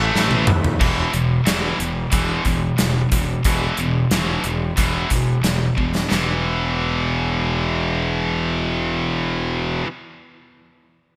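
Hard rock with a menacing, driving feel, this short cut from a longer piece moves in a straight 4/4 and opens on a very quiet, gritty tonewheel organ that holds overdriven chords through a slow rotary speaker, with audible key click, before it drops out at 0.8 seconds. A heavy, double-tracked high-gain guitar carries the riff from start to finish, bright and distorted and sitting up front, moving from an A5 to an E5 power chord. Beneath it, a fingered electric bass adds fuzz and growl, punchy and direct alongside the guitar. A gated 1980s drum kit enters at 0.2 seconds with a fill, playing crash, hi-hat, punchy kick, medium-tuned snare and toms in an airy stone room with gleaming cymbals, then plays another fill into a second section before stopping at 6.3 seconds. The polished digital production has a crisp 1980s sheen and a light touch of small room reverb.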